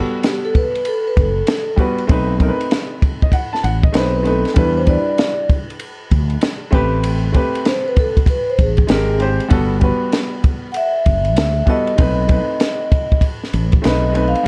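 Swung sixteenths at 97 BPM in 4/4 drive this smooth jazz-hop excerpt, with a compact cocktail drum kit of hi-hat, ride, tight kick and high-tuned snare carrying a rolled-off top and vintage 12-bit sampler grit. A woody, short-sustain upright piano comps through Gmaj9, B7b9, Em7 and Am9 with a brief Abmaj9 turn, and a fretless electric bass joins at 1.2 s. Over it all, a mellow, ringing vibraphone played with soft mallets and the motor off takes a close, dry solo melody from 0.3 s, set in a dark, warm production with light reverb.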